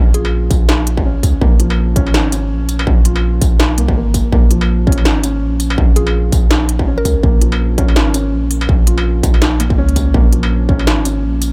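A dry, close-sounding excerpt of tense, heavy half-time drum and bass at 165 BPM in Bb minor, sitting on a single Bbm chord with a swung 16th-note feel. A felt-muted upright piano plays soft, dark arpeggios through a delay, while a deep, sine-toned 808-style bass sits up front in long, decaying notes, and a woody, round FM synth pluck with chorus, phaser and dub echo surfaces in the background at 0.1 and 6.0 seconds. An industrial kit of clanging snare, crisp hi-hats, struck metal and tambourine drives the groove, joined at 0.5 seconds by a distorted electronic kick re-recorded in a small room.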